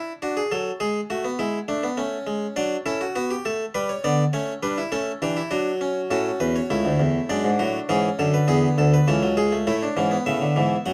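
Elegant and stately, this short fragment of a baroque-style four-part fugue moves at 102 BPM in an even 3/4, played by a solo harpsichord with a single set of strings in the French style, tuned slightly high. The harpsichord sits up front with an airy, bright, plucked tone, spanning a broad register from low bass to the upper treble. Light reverb and a dark, warm production frame the counterpoint as it moves through chords centred on D and A and arrives at a new section at 9.7 seconds.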